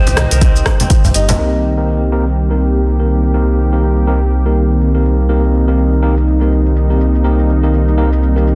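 A breathy, reedy pan flute opens this earthy, spiritual afro house excerpt over a Cm7 chord, sitting in the background with dub echo before falling away at 1.1 seconds, while a smooth, detuned analog pad holds sustained chords with chorus and sidechain pumping. A crisp, ringing kora spins arpeggios through a filter sweep and dub echo until 2.8 seconds, and a round, dark analog bass with tube saturation sits up front throughout. Almost at once a tape-toned, layered deep house kit brings hi-hat, rim click, shaker and toms under low-pass filtering, with a soft-clipped snare and swung sixteenths, joined briefly by ringing congas, a deep djembe with metal rattles, and a deep electronic kick placed up front. At 1.4 seconds a clean tine electric piano enters with up-front stabs, roughened by vintage 12-bit sampler grit and carried through a filter sweep, sidechain pumping and dub echo. Light reverb and a dense, heavily limited modern master give the whole piece a loud finish.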